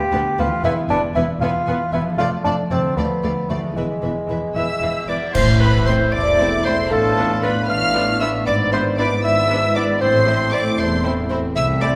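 Quirky and sneaky, this playful, whimsical cinematic cue in A minor moves at 77 BPM in 6/8. It opens on a warm, distant bassoon with a soft attack, ringing fingerpicked harp arpeggios, and bowed strings with vibrato: violins carry an expressive melody over a smooth second violin line, a very quiet, focused viola section sits beneath them, and rich cellos and double basses hold the bass. A dark, dry cymbal swell, clash cymbals and concert bass drum enter at 2.2 s, and at 4.6 s a bright, woody marimba with hard mallets joins the melody while a clear, present oboe, airy flutes and a solo clarinet add a second line, before a mellow, tight French horn section adds sustained chords from 5.4 s as the harmony settles onto A minor, the ensemble set in a wet scoring-stage reverb.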